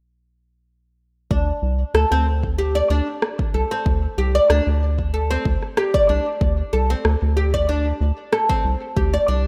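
A woody, plectrum-plucked oud up front spins tape-echoed arpeggios from 1.3 seconds in this meditative organic downtempo fragment at 94 BPM with a light sixteenth-note swing, carried by a round, nasal analog bass with sidechain pumping, a deep electronic kick, and an electronic rim click that joins at 1.9 seconds, set in a rough home demo mix with light reverb.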